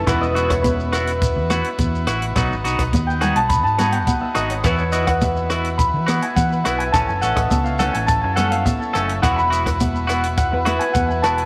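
A ringing, thumb-plucked concert harp sits up front in a moderate plate reverb, its arpeggios carrying a tape echo as it takes the solo across this joyful, danceable highlife guitar band passage cut from a longer piece. The groove moves at 105 BPM in a straight 4/4 in E major, cycling through Esus2, B, Esus2, A and back to Esus2. A round, punchy hollow-body short-scale bass, fingered and amped with a dark tone, anchors the low end, while a clean, twangy electric guitar plays picked, compressed accompaniment bathed in spring reverb. A compact cocktail drum kit gives a dry, natural feel with hi-hat, rim click and a punchy kick, joined by bright, high-tuned congas with a saturated, compressed edge. Further back, a grainy, mellow shekere in a small room adds texture, and a buzzy, vintage overdriven combo organ with light vibrato holds sustained chords beneath the harp.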